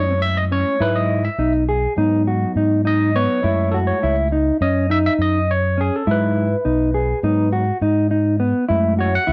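Set in a straight, insistent 9/8, this short progressive instrumental excerpt feels driving and tense from its first beat. An overdriven tine electric piano carries the solo for the full 9.3 seconds, its bright, barky tone made gritty through a combo amp and colored by a phaser and cassette tape. Alongside it, a mellow electric guitar plays dark, clean, fingered arpeggios in a narrow middle register, also with a cassette tape character. A fingered electric bass sits low and up front, round and punchy, with a direct, amped sound. The harmony cycles through F#m7, Emaj7/G# and G#m7, and the whole is framed by light reverb and the intimate sound of a home recording on cassette.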